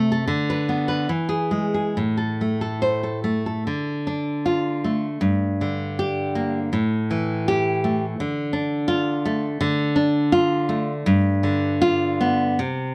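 Melancholic and wistful, this short excerpt from a longer romantic piece for solo classical guitar moves in 2/4 with a rubato feel at 66-84 BPM, beginning in A minor before shifting to D minor at 3.7 s. The fingerpicked nylon-string guitar sits up front with a full-bodied sound, fresh strings and audible finger squeak, ranging from G2 to C5 through chords such as Bm/D, E, Am, Dm, Gm and a closing G7. A light reverb surrounds the playing.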